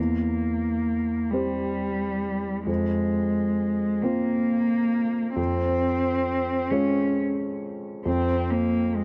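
A single muted cello, bowed con sordino with light vibrato, soft attacks and portamento, carries a veiled second line through tape echo across the full 9 seconds, while a dark, mellow grand piano accompanies. This fragile, longing neoclassical passage moves in a rubato 6/8 at 44 BPM in F harmonic minor, drifting from C/E through Fm and Db/F to a bare F5 at 8.1 seconds. It is cut from a longer piece and captured as a dry, close 1970s-style studio recording with light reverb.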